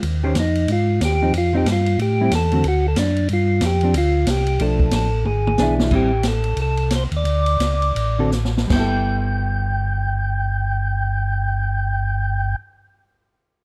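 Greasy and bluesy, this soul jazz organ trio excerpt swings in 4/4 at 155-184 BPM in G mixolydian, with a percussive tonewheel organ carrying the melody through a slow rotary speaker, a mellow, round organ bass adding chorus vibrato, a dark, clean hollow-body jazz guitar comping until 6.1 seconds and returning at 8.2, and an acoustic drum kit with dark cymbals and a boomy kick playing fills before stopping at 8.8 seconds, all captured close and dry as the tempo slows between 5.9 and 8.7 seconds before settling on a G69 chord.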